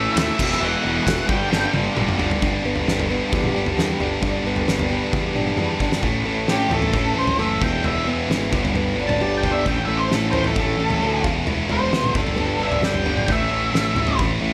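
Lightly reverberant and dense, this fragment of bittersweet, cathartic alternative rock moves at 132 BPM in a straight 4/4, cycling through E, G and A chords. A loose indie drum kit with a pumping studio room, dark cymbals, a fat snare and a punchy kick drives the piece, joined by a growling picked electric bass, overdriven and sitting in the background. Three electric guitars build the riffs: a bright, scooped high-gain part, a sludgy overdriven part tucked behind it, and a crunchy, double-tracked guitar heard only in the opening moments. At 2.4 seconds a boxy, fingerpicked parlour acoustic guitar enters with plate-reverbed arpeggios, finger squeaks audible beneath the din. An octave-fuzz lead guitar, dark and distorted with slapback echo, flashes briefly at the start and returns at 6.5 seconds for a solo that carries the piece to its close.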